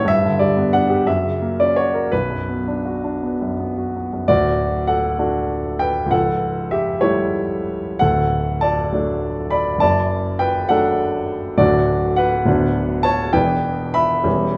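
Passionate and bittersweet, this romantic character piece for solo piano moves in 6/8 with a flexible, rubato pulse, turning from a B minor opening to a brighter D major section at 4.3 seconds. The grand piano sounds warm, smooth and vintage, placed up front and spanning from deep bass notes to the upper middle register, while a generous recital hall reverb gives it a resonant glow. Cut from a longer work, the passage drifts through tender harmonies before arriving on an E minor seventh chord at 13.4 seconds.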